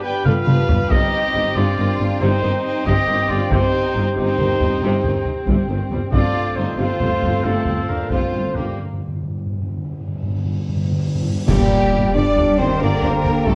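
This epic, relentless orchestral film-score cue in G minor opens with a clear violin melody over a rich second violin line, mellow sustained chords from French horns, trombones and woodwinds, and up-front trumpet stabs, while lush violas, a mellow tuba, close cellos, soft-attack double basses and hard-stick taiko drive a 12/8 pulse at 92 BPM. Hard-mallet timpani fill the middle stretch from 6.1 seconds, the trumpet drops out at 8.8 seconds for a break, and a huge, bright cymbal swell builds toward a Gm impact at 11.5 seconds, marked by dark clash cymbals, concert bass drum and a pure, silvery flute line up high. The sound sits in a wet recital hall and carries the warble and pitch drift of worn cassette tape.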